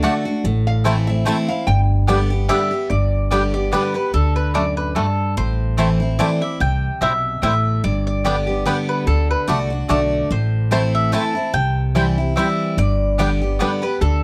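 Lively and rustic, this bluegrass excerpt in G major moves at 146 BPM in a swung 3/4, with a lap resonator guitar's metallic, nasal slide line out front until 1.8 s, and a mandolin taking the warm, woody melody from 2.5 s. A twangy, percussive banjo carries its own melody beneath, while a second, mellow mandolin adds stabs. A full-bodied steel-string acoustic guitar with audible finger squeak supplies the accompaniment and a thumpy, pizzicato upright bass holds down the low end over chords cycling through D, Am, C and G, all captured close and dry in fine detail.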